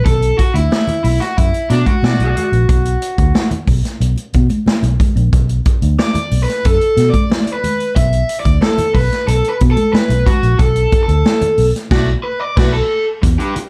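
A raw, overdriven garage guitar solos from the start of this driving, funky 91 BPM excerpt in B minor over a Bm7 chord, backed by a round, foam-muted vintage bass, a distant, roomy big-band drum kit with a punchy kick and medium-tuned snare, and high-tuned, dry congas in the background, while a clear, lightly vibrato horn section punctuates the band accents at 1.7 and 11.9 seconds, all set in a dark production with light reverb.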